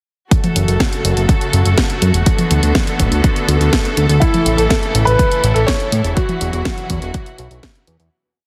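A punchy four-on-the-floor electronic kick and a disco machine beat with cracking snare, closed hi-hat and high tom drive this bittersweet, melodramatic italo disco piece at 123 BPM in F# minor, as a fat, detuned sawtooth bass gallops in sixteenths up front from 0.6 seconds, rich bowed strings hold sustained chords through F#m, D6, A and Esus2, and an intimate grand piano with audible action noise and digital delay enters at 4.2 seconds with hook phrases while the heavily compressed, radio-like mix with light reverb fades out from 5.5 seconds.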